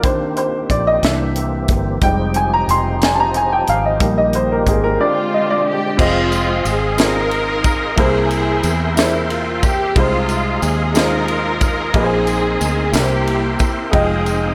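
Slow gospel in 6/8, jubilant and soulful, opens with a woody, up-front upright piano taking a solo over clean tonewheel organ chords with key click, chorus vibrato and a fast rotary speaker, a round, foam-muted fingered electric bass, and a tight funk drum kit with a high-tuned snare and dark cymbals. A lush studio string section enters at 5.0 s with a bowed, sul tasto melody. A jingly, close tambourine joins quietly in the background at 6.3 s as the harmony moves through rich ninth and suspended chords under light reverb.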